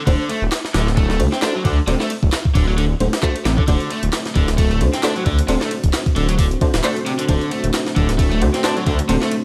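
A thick, menacing detuned saw bass sits up front in this swaggering, raw breakbeat excerpt, its beating sawtooth tone spanning D1 to D2 at 133 BPM in 4/4, with a 56% swing on the sixteenths and a D7 chord at the start. Beside it, a compressed, pitched-up sampler-style break drives the groove with a thumpy kick, high-tuned snare, hi-hat and ride cymbal, all treated with studio reverb, while a dry, overdriven analog drum machine adds handclaps and hi-hat in the background from 0.5 seconds. A double-tracked, picked electric guitar plays a bright, overdriven riff through digital delay, and a bold orchestra-hit-like synth stab punches in with layered, detuned sawtooth unison, a noise layer and ring modulation, colored by a filter sweep, built-in reverb and delay. At 3.7 seconds a deep, moody analog pad enters in the background, holding sustained chords with a sub octave, chorus and sidechain pumping. 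Light reverb and vinyl crackle give the whole track a gritty, lived-in surface.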